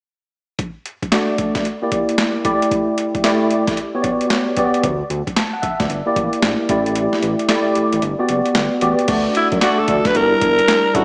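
A gritty, overdriven sampler-style drum kit opens the piece at 0.6 s with a thumpy kick, snare, hi-hat, handclaps and crash in an upbeat, bouncy, swung new jack swing R&B groove, and a clean tine electric piano with ensemble chorus joins just after. A mellow sawtooth-and-square synth bass with vibrato enters at 4.8 s, the kick briefly falls away, and a breathy, raspy alto saxophone takes the melody at 9.4 s with scooped notes. The dreamy mix is soaked in lush hall reverb and has a small-speaker sound, and the passage is cut from a longer piece.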